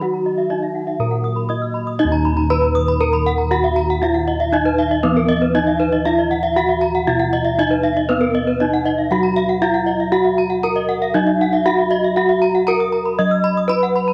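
This is a shimmering, hypnotic excerpt of Balinese gamelan in a straight four, cut from a longer piece and captured as a home recording on cassette. It opens at once with a bronze metallophone carrying the melody, struck with a wooden mallet and sitting up front, alongside bossed gongs holding the bass with a round, dark, smooth tone. Two more metallophones spin arpeggios high above: one, played with a horn mallet, sounds bright, close-miked and dry, while the other, entering at 0.1 s, has a boxy small-room character. All three metallophones use paired tuning that produces beating, ringing tones, and each carries a cassette-tape coloring. A moderate spring reverb hangs over the whole ensemble, and after a short opening passage the music settles into its main section at 2.0 s, continuing to the cut at 14.1 s.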